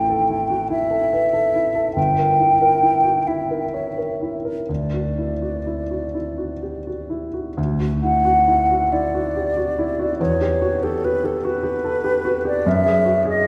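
Dreamy and pastoral, this fragment of a longer impressionist classical piece for flute and grand piano drifts in a rubato 6/8 at about 41-50 BPM in D major, with a pure, hollow flute melody full of vibrato and soft attacks floating over an intimate piano accompaniment whose action noise is audible, both set close in a church's lingering reverb as the harmony wanders from Asus2 through Gm6 and Dadd9 to Emadd9 and F#sus2.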